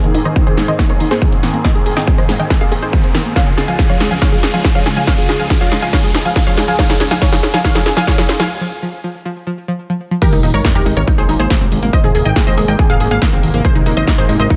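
A straight, pulsing 4/4 groove drives this soaring uplifting trance passage, cut from a longer piece, through a build-up and into a drop. A punchy analog drum machine plays a long fill with snare, hi-hat and crash cymbal, its hats and cymbals pumping against the sidechain. A layered, tape-warm electronic kick sits up front, and a grainy, close egg shaker ticks in the background while a riser and sub drop build behind them. Over chords moving from Abadd9 to Db and back, a lush, detuned unison pluck carries the melody with chorus, delay and sidechain pumping. Beneath it, an evolving supersaw swell holds soft-attacked chords through a phaser, and a round, full-bodied analog pluck spins filter-swept arpeggios with chorus and tape echo. After a short break at 8.5 seconds, the drop lands at 10.2 seconds with an impact, bringing in a fat, saturated sawtooth bass and a second, ring-modulated unison pluck line with tape echo, all set in light reverb, with the drums re-recorded in a large room.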